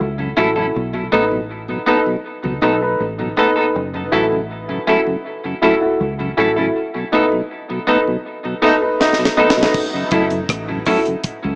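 Dub reggae at 80 BPM in F# dorian, hypnotic and spacious, where a woody upright piano stabs through tape echo over a round, foam-muted fingered bass and a dark tonewheel organ turning on a slow rotary speaker, while a bright, clean semi-hollow guitar with subtle chorus and echo sits up front, a distant horn section slips in briefly at 8.6 seconds, and a dry reggae kit with a high-tuned snare arrives at 9.0 seconds with a fill into the closing F#m7, all set in a moderate echo-chamber reverb within an echo-heavy mix with a small-speaker sound.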